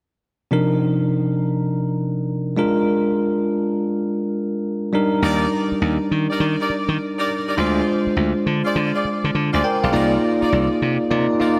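R&B with a bouncy, punchy swing, this short cut from a longer piece opens on a bell-like tine electric piano, clean and up front, moving through chords from Cm11 to Bb7 and Ebmaj7. At 5.2 seconds a glassy slap bass joins with a direct, bright attack, while a clear jazz-style horn section adds stabs with light vibrato and delay, set lower in the mix. The whole sound is soaked in a lush hall reverb that gives the groove a dreamy sheen before the return to Cm11 at 9.9 seconds.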